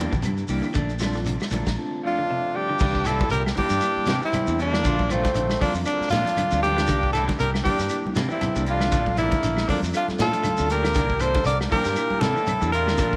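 A clear, up-front tenor saxophone carries the melody from 2.1 s, joined by a softly vibrato trumpet and a loose, very quiet trombone section on second lines, in this funky, joyful afrobeat passage at 118 BPM with a 16th-note swing in C mixolydian, where a growly fingered electric bass, a roomy soul drum kit with dark cymbals, hard-hand congas, grainy shekere and woody claves drive the groove beneath clean electric guitar stabs, hollow-body guitar arpeggios and a flute-like tonewheel organ on slow rotary speaker that adds a fill at 1.3 s, all cycling between C9 and Bbmaj7 in a moderate echo-chamber reverb.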